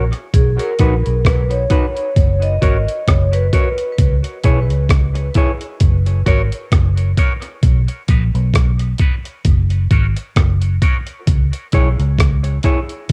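Dub reggae at a slow 66 BPM in B major, this short cut from a longer piece feels spacious and hazy, with a gentle swing on the sixteenths and a homemade cassette character. Up front, a gritty, compressed sampler-style breakbeat kit lays down a thumpy kick, hi-hat and rim click, its sound tinged with tape, while a dark, round, foam-muted vintage bass sits just as prominently in the low register. A clean, dark electric guitar plays fingered accompaniment further back, soaked in spring and plate reverb and dub echo, and from 4.0 to 11.3 seconds a filter sweep colors its sound. A bright, ringing vibraphone played with medium hard mallets carries the melody only briefly, from 0.3 to 4.0 seconds, its slow motor vibrato trailing into dub echo. The chords move through B, F#, C#m and back, giving the groove a relaxed, circling pull.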